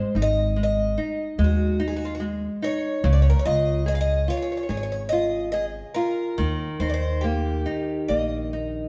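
A bright, shimmering twelve-string acoustic guitar carries the melody up front in this mournful, longing fado-style ballad, its picked, octave-doubled lines ringing with fresh strings and a touch of finger squeak. Beneath it, a small, fingerpicked nylon-string guitar supplies warm accompaniment, while a woody pizzicato upright bass enters at 0.1 seconds, as the harmony moves through Ab5, Db and Eb at a rubato 72 BPM in 4/4. Cut from a longer piece and tuned to A4 = 438 Hz, it captures the band playing live together in a wet stone room.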